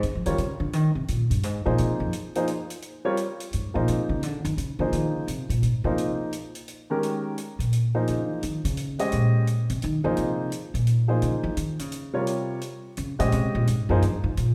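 A woody, pizzicato upright bass solos up front over a natural-sounding acoustic hi-hat from the very start of this cool, spiritual fragment of swung modal jazz in three, as a warm, open baby grand piano enters at 0.3 seconds with minor seventh and eleventh chords, the trio heard in the moderate reverb of a church or concert hall.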